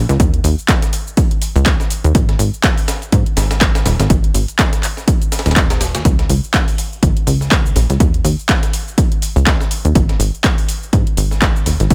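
Piano house with a joyful, uplifting mood and a swung sixteenth-note feel, this short cut opens on a funky, plucky analog bass that pumps against an overdriven electronic kick drum sitting up front from 0.2 seconds. An analog drum machine adds tape-warm handclaps, hi-hat and shaker, while a gritty, compressed breakbeat sampler-style kit, with its high-tuned, filtered snare and hats, rides in the background. The filter-plucked bass has a fast, decaying sawtooth-and-square bite, and the layered kick carries the character of a large room, all set in a digital ambience.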